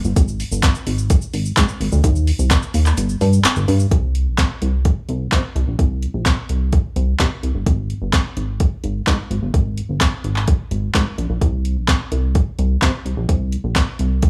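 A straight 4/4 dance-pop groove drives this confident excerpt, built on a dry, electronic R&B-style drum kit of soft kick, sharp snare, handclaps, shaker and warm hi-hats, roughened with overdrive and sitting up front with a small-room character. Alongside it, a dark, glossy, retro chorused synth bass with a plucky filtered attack pumps with sidechain compression. The opening drop runs until 3.9 s, with the kick falling silent from 3.0 s before the next section arrives.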